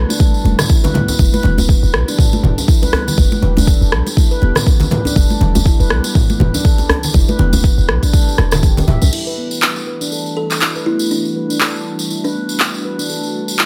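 This hypnotic, spiritual afro house excerpt opens on an ethereal, airy pad holding sustained chords in the background, colored by ensemble chorus, a phaser and sidechain pumping, while a ringing, meditative handpan plays dark, smooth arpeggios through tape echo and a low-pass filter. Almost at once the groove fills in with a distant, jingly tambourine, close and dry congas struck with hard hands, a deep djembe with metal rattles, and a deep, layered electronic kick sitting up front beside a produced deep house kit of crash cymbal, handclaps, rim click and toms. Underneath, a boomy, mellow 808-style bass with a fast attack pumps against the kick, and the harmony moves from Em11 to G6 at 1.2 seconds. At 9.1 seconds the bass, congas, djembe and kick fall away, the chords return to Em11, and a filter sweep moves across the handpan while the pad, tambourine and kit carry on. A woody, softly plucked kalimba then adds a short, mid-forward phrase with tape echo, and the mix stays dry throughout.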